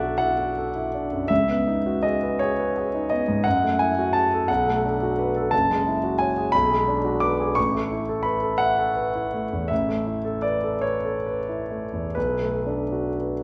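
Wet recital-hall reverb surrounds an intimate, up-front concert grand, whose deep bass, long sustain and audible action noise give this short excerpt from a longer piece a hazy, nocturnal feel. It is impressionist classical solo piano in B dorian, tuned to A4 = 438 Hz, moving in a slow, rubato 6/8 of roughly 38 to 60 dotted-quarter beats per minute. Lush extended chords drift from D69 over B through C#m11, F#m9 and Bm7 to a lingering Aadd9 at 7.6 seconds, before settling back on Bm7 at 12.2 seconds.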